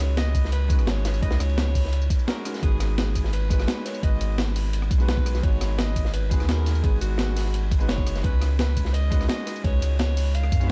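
A dark, warm production in a small room sets the scene for this melancholic, lush slice of liquid drum and bass, cut from a longer piece and moving in a straight 4/4 pulse. A bright, punchy alto saxophone carries the solo melody with a pop-style edge, trailed by dub echo, while a clear concert grand piano with an open, deep low end supplies the accompaniment. Up front, a thick, saturated sub bass with a fast attack and sustained tone anchors everything beneath. The drums are layered: a gritty, compressed sampler-style breakbeat kit with overdrive works hi-hat, ride, rim click, snare and tambourine, a crunchy acoustic kit with dark, rolled-off cymbals and a smooth, warm character sits in the background from 0.2 seconds, and an overdriven, knocking electronic kick joins at 0.3 seconds. A brief break falls at 2.3 seconds, and the harmony moves from a suspended chord into a minor seventh at 2.6 seconds before the suspended chord returns near the end.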